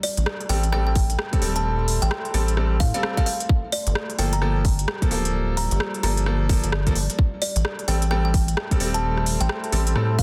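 UK garage in a two-step groove at 130 BPM with swung 16ths, this soulful, moody excerpt moves from Am7b5 to Gm9 and back, setting a woody, close-miked kalimba melody over a garage drum kit with crisp hats, rim clicks and a soft-clipped snare, a rubbery, wave-folded square bass up front from 0.2 s, brilliant grand piano stabs with delay from 0.5 s, a tight, layered electronic kick up front from 1.0 s, and a deep, detuned sawtooth pad with chorus, reverb and sidechain pumping sitting in the background, all within a dense, heavily limited modern master.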